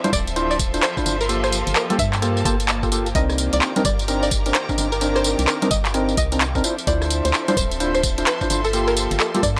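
Late-night and skippy, this two-step UK garage excerpt at 129 BPM swings its 16ths over Dm9, Gm9 and Cm9 chords, driven by a knocking electronic kick and an up-front garage kit of metallic hats, handclaps, rim clicks, congas and tambourine, with a dark, hollow FM bass carrying tube saturation, mellow chorused organ stabs, a twangy resonator pluck melody with chorus and analog delay, a distant, biting studio string section pumping in the background, and a very quiet, intimate chamber violin section holding soft sustained chords, captured in a dry, gritty hardware recording.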